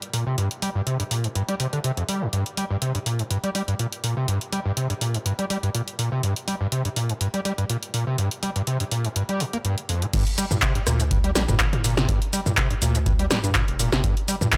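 Acid house at 123 BPM in G minor, hypnotic and driving, this excerpt opens with a punchy, overdriven analog drum machine of snare, handclaps, hi-hat, rim click, shaker, toms and crash, its snare, clap and hats set in a short room, alongside a squelchy, gritty acid bass riff, resonant and distorted with tube saturation, chorus, tape echo and sidechain pumping. At the drop at 10.1 seconds a dry, deep, tape-warm electronic kick arrives with a round, dark analog bass carrying a filter sweep and its own sidechain pumping, the bass stopping at 14.1 seconds. Light reverb and digital ambience frame the mix, with the acid riff and drum machine sitting up front.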